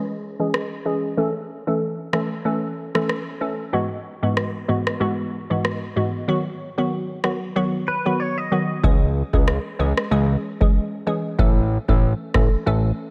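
Hypnotic and tough, this dancehall fragment, cut from a longer piece, rides a swung groove under a dreamy wash of plate reverb. A glassy wavetable pluck carries the accompaniment from the start, its crystalline, detuned tone shaded by chorus and a filter sweep through the opening chords of C#m, A, Eadd9/G# and B. A booming analog drum machine sits up front with a deep kick and rim click. At 7.9 seconds a clean, twangy electric guitar slips in with a brief, bright arpeggio softened by analog chorus. From 8.8 seconds a fat, saturated analog bass takes the low end, its nasal sawtooth and square-wave blend thick and evolving as the harmony returns to C#m and A.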